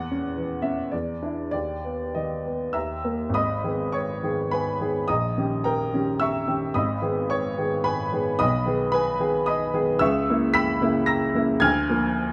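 A woody upright piano opens alone, sounding close and up front with a smooth, vintage character and long sustain, set in light reverb. This is a romantic classical character piece for solo piano in G# minor, moving in 3/4 at roughly 96-118 BPM with a flexible rubato feel and tuned slightly high to A4 = 441 Hz. The mood is bittersweet yet stormy, and the instrument reaches from deep in the bass at G#1 up to B6. A brief opening passage of shifting harmony gives way at 3.3 seconds to a second passage that settles onto G# minor before drifting through darker diminished and dominant colors. Cut from a longer piece, it ends at 12.3 seconds.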